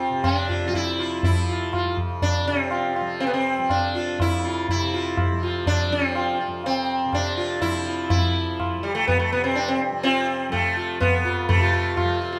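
A moderate recital-hall reverb surrounds this devotional, meditative passage of Hindustani classical music, cut from a longer performance in raga yaman on F, set in 7/4 at 123 BPM and speeding up throughout. Up front, a round, buzzing, plectrum-plucked sitar carries the melody with shimmering sympathetic strings, above a bright, softly plucked tanpura drone sitting lower in the mix. A close, high-tuned tabla rings out from 0.2 seconds.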